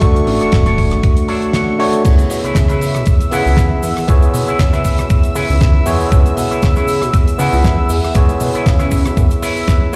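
Cosmic and sensual, this nu-disco excerpt at 118 BPM in C# phrygian swings its 16ths over a Dmaj7 to C#m7 change, with a thumpy, up-front electronic kick and a dry, fat-snared 70s drum kit beneath a glossy, dark chorused synth bass, a gritty overdriven tine electric piano pumping with delay, and a lush, detuned unison pad coloured by chorus and phaser in the background; a twangy envelope-filtered guitar riff enters at 0.3 seconds, a clean electric guitar fill arrives at 1.0 seconds, and a compressed cabasa joins at 2.1 seconds, the whole mix sitting in a large studio reverb.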